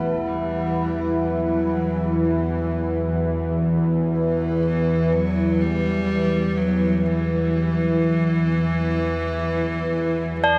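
Ominous and dark, this short dark ambient drone sits on a single suspended chord, with a tense, string-like drone up front carrying bright, detuned sawtooth grain and vibrato beneath a deep, moody pad that adds chorus and a mellow, wave-folded sub octave. An intimate cello played sul tasto with an airy bow and light vibrato fades in over the whole 10.6 seconds, its melody trailing a diffuse ambient delay, while solemn tubular bells ring out arpeggios in the background through the same delay. A barely audible bronze singing bowl adds slow metallic beating, and the whole mix is steeped in a huge, wet reverb with a cassette tape character.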